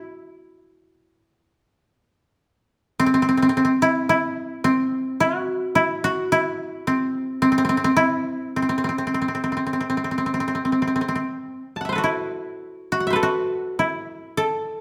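A solo koto, plucked with fingerpicks, carries this short passage of Japanese traditional chamber music from start to finish, ending at 14.8 seconds as a fragment cut from a longer piece. Its tone is mellow and woody, with a dry, close quality that places the instrument up front. The playing moves in a free, rubato pulse over a 4/4 frame, ranging from C4 up to A5. The mood is solitary and austere, with the single acoustic voice heard alone in a moderate recital-hall ambience.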